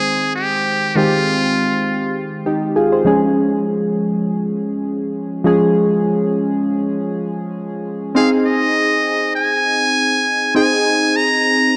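Pop at 100 BPM with a light swing, romantic and glossy in A-flat major, this fragment sets round analog keys with chorus and a filter-swept pulse-and-sawtooth tone under a buzzy, metal-muted trumpet that sings up front with light vibrato and scooped notes, dropping out at 2.2 seconds and returning at 8.2 seconds, the mix bathed in a lush hall reverb within a dark production.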